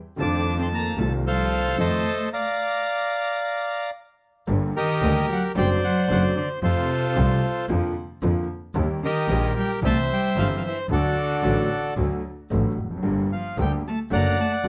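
A rubato tango in 4/4 around 112 BPM opens this passionate, melancholic excerpt, starting in Bb major and turning to G minor at 4.5 seconds, with a full stop in the playing from 2.3 to 4.5 seconds. The bandoneon carries the melody, reedy, full and close-miked up front with a touch of plate reverb, ranging from F4 up to D6. Beneath it a bowed cello plays a second line with vibrato and portamento, expressive yet distant in the mix. A concert grand piano supplies accompaniment with deep bass and an open tone, while a single bowed double bass anchors the low end, biting and nasal with an earthy, airy bow and light vibrato. The harmony moves through F7 and Bb before passing through Gm, D7/F#, Eb and C, ending on D/F# at 14.1 seconds. The production is dark and warm, set in a moderate studio reverb.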